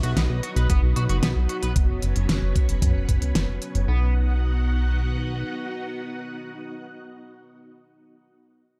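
A glossy, dark synth bass sits up front in this dreamy, romantic synthwave excerpt in B major, its pulse-wave and sawtooth tone shaped by pulse-width modulation, a filter sweep, chorus and tube saturation. It moves at 113 BPM in a straight 4/4 over a simple progression from B to F#sus4 and back to B. A lush vintage string machine carries slow-attack sustained chords with a sub octave, ensemble chorus and sidechain pumping. A twangy, slightly broken-up electric guitar picks a riff through analog chorus and tape echo during the opening passage, while a pop kit with a fat snare and crisp hats plays up front. A knocking, tape-warm electronic kick joins at 0.7 s, and the kit drops out at 3.9 s as the second passage begins, leaving the bass and the strings, which hold on until 8.3 s, in a dry sound with little reverb.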